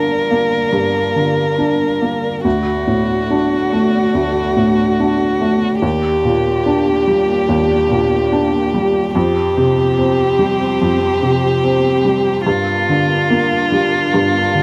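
Neoclassical piano and strings in G minor at a rubato 72 BPM, this reflective, longing excerpt sets a rich, vibrato-laden solo violin melody over a felt-muted upright piano whose soft, boxy tone carries audible action noise up front, while a focused chamber string section holds sustained chords in the background through a progression from Gm7 to D, Ebmaj7 and Fsus2 before returning to Gm7 at 12.5 seconds, all captured with close, detailed microphones and light reverb.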